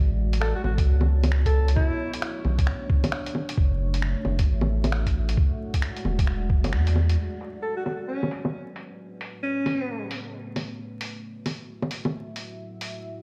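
Vinyl crackle and a large studio reverb give this future garage excerpt the cavernous sound of a big system playing in a bare room, with a rainy, ghostly mood at 133 BPM and a swung sixteenth-note feel. A deep, moody pad of unison sawtooth layers with a sub octave holds slow-blooming chords through A69, Bm9, F#m7 and E9, with Bsus2 replacing Bm9 on the second pass, its chorus and built-in reverb pumping against a sidechain. Beneath it, a round, soft dub sub bass sits up front and pumps in the same way, while a thumpy, muffled kick with small room ambience anchors the first half. A compressed, pitched-down lo-fi kit of bongos, finger snaps and filtered hi-hats carries the groove, and the band hits an accent at 6.7 seconds. The sub bass stops at 7.2 seconds as filter sweeps begin on the pad and drums, and a distant, roomy alto saxophone with light vibrato and tape echo, heard briefly at the start, returns at 7.6 seconds for a second short phrase.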